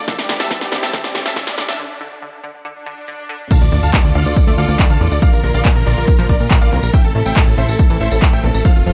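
A punchy electronic kick drum sits up front in this driving, euphoric uplifting trance passage at 140 BPM in D minor, cut from a longer piece and moving from a build-up into a drop at 3.5 seconds. Above it, a huge, detuned supersaw lead carries the melody with tape echo and sidechain pumping, while a rich, bowed string section holds sustained chords in the background and a very quiet, tight sequenced synth runs arpeggios under a filter sweep through the build-up. A big-room dance kit with a crisp hi-hat, punchy snare, handclaps, tambourine and crash cymbal plays a drum fill before a short break, and a riser, swell and sub drop mark the approach and the impact of the drop. At the drop, a plucky, funky analog bass with tube saturation enters at 3.6 seconds, and a warm concert grand piano plays a second line in the background with echo and pumping. The chords move from C to Dm, Bb and Am, and the mix is dry, with a high-pass filter across it.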